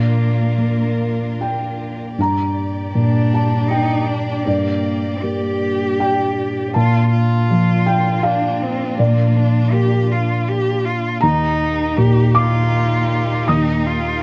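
A felt-muted upright piano sits up front in this intimate, tender neoclassical fragment, its dark, mellow tone carrying the accompaniment from Eb2 to Eb6 at a rubato 80 BPM in 3/4. A single bowed cello adds an expressive second line with vibrato and portamento, set more distant, while a chamber string section holds rich, focused sustained chords as the harmony moves from Bb to Gm, back to Bb and then to Eb. Close, detailed miking and little reverb keep the sound dry and near.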